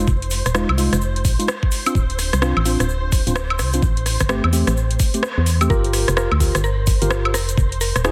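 Late-night and soulful, this swung two-step UK garage passage in G minor runs at 128 BPM, with a knocking electronic kick and a garage kit of metallic hats, rim click and woodblock, both overdriven and up front, over a hollow, dark, organ-like FM bass with sidechain pumping, while mellow tine electric piano stabs ring through digital delay, silky vintage string-machine chords breathe with ensemble chorus, and a grainy egg shaker sits in the background; after a band accent at 5.2 seconds and a brief kick dropout, the drop at 5.7 seconds brings in a woody, round mallet-like synth pluck, framed by light reverb, vinyl crackle and a dense, heavily limited master.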